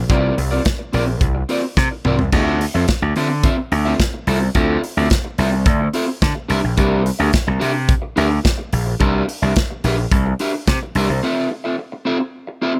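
Glamorous and sultry, this disco excerpt moves at 108 BPM in D minor, with a bright, overdriven slap bass up front and an acoustic drum kit with a punchy kick and a medium-tuned snare, also up front and set in a small, airy room. A dark, fingered electric guitar at the edge of break-up, touched with subtle chorus, carries the accompaniment over chords that shift from C9sus4 to Dm9 after a drum fill at 1.8 seconds. Bass and drums stop near 11.2 seconds, leaving the guitar alone over Fmaj7/C until the cut at 12.8 seconds.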